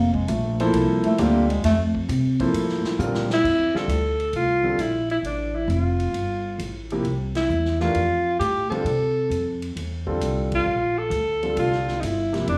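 A mellow, close-miked bass clarinet opens this hypnotic, spiritual modal jazz excerpt in F major at 133 BPM with a swung 4/4 feel, joined by thumpy, woody pizzicato upright bass, a vintage drum kit with a punchy kick and rolled-off top, and a deep-bodied concert grand piano comping on Fmaj9, before a drum fill hands the melody to a bright alto saxophone with light vibrato, scooped notes and plate reverb at 3.3 seconds, while the band punches accents at 7.3 and 10.4 seconds in a moderate studio room.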